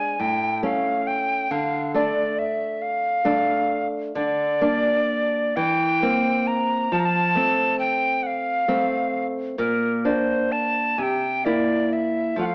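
Solemn and yearning, this romantic duo for alto recorder and nylon-string guitar unfolds in a slow, rubato 6/8 at around 42-46 BPM counted in dotted quarters, cut from a longer piece. The alto recorder carries the melody throughout, its airy, wooden tone shaded with vibrato and the soft chiff of tongued notes, close-miked and expressive at the front of the mix. Beneath it, the fingerpicked classical guitar supplies a dark, full-bodied accompaniment, with finger squeaks audible on the strings. The harmony begins in D minor and turns toward F major from 4.2 s, moving through Bb and C7 before closing on C7 at 11.0 s. Both instruments sit in a reverberant recital hall, yet the whole recording is filtered through a narrow, AM-radio character that gives it an old-broadcast feel.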